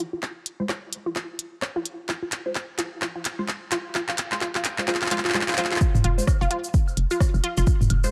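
Quirky and cool, this minimal techno excerpt rides a swung groove, opening with clicky hats, handclaps and rim clicks from an up-front click kit, a punchy overdriven kick, a squelchy, resonant blip pluck on F4 under chorus, delay and sidechain pumping, and muted dub chord stabs drenched in phaser and dub echo, both synths under a filter sweep as a drum fill drives the build-up over an F minor chord. At 5.8 seconds the drop lands: grainy cabasa joins, and at 5.9 seconds a hollow, bouncy FM bass knocks on F1 with sidechain pumping while analog-sounding electronic toms, woodblock and claves sit in the background of a large room.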